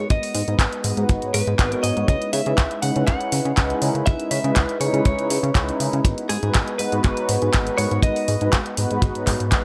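Cosmic and sensual, this nu-disco excerpt puts a tight, dry kick up front beneath overdriven house handclaps and hi-hat, while a glossy, pulse-width-modulated synth bass and a smooth, detuned analog pad (both pumping with sidechain, the pad also carrying a filter sweep) move between G#m7 and C#m9 in a small room, and a clean, direct-recorded electric guitar plays a picked melody with subtle chorus and dub echo until 8.5 seconds.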